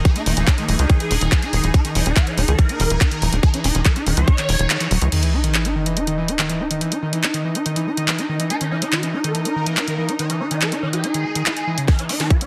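A screaming, squelchy acid line powers this intense, alien psychedelic trance excerpt at 142 BPM, its distorted, resonant sawtooth riff running throughout with chorus, tape echo and sidechain pumping. It opens on a drop where a tight, up-front electronic kick and a layered garage kit with a cracking snare, handclaps, hi-hat and crash drive under a punchy, nasal sequencer bass. A swarming rave lead of detuned unison voices sings a bright, phased melody, and a very quiet metallic wobble bass flickers in briefly between 0.5 and 1.0 seconds. Behind it all, a pulsing gated texture holds sustained chords with slow-blooming, tempo-synced shimmer. At 4.7 seconds the band hits an accent as the kick drops out, and a sub drop impact at 5.1 seconds opens a stretch where the lead pauses before returning. A drum fill and riser at 11.9 seconds close the passage, all inside a dense, heavily limited modern master with light digital ambience.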